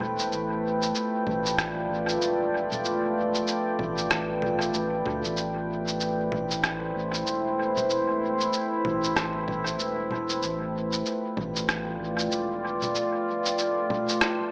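A deep, moody sawtooth pad sits up front with chorus and its own reverb, holding slow-blooming chords that move from G7 to Am9 and back in this spacious, meditative ambient dub excerpt at 95 BPM with a 16th-note swing. Beneath it, a round analog bass with a sine-like, sustained tone anchors the low end, while muffled, pitched-down electronic congas, shaker and rim click sit close and tape-warm with dub echo, and a very quiet electronic kick enters at 1.6 seconds and drops out at 11.8. The whole piece is bathed in a wet spring reverb and a small-speaker character, giving it a hazy, dark glow.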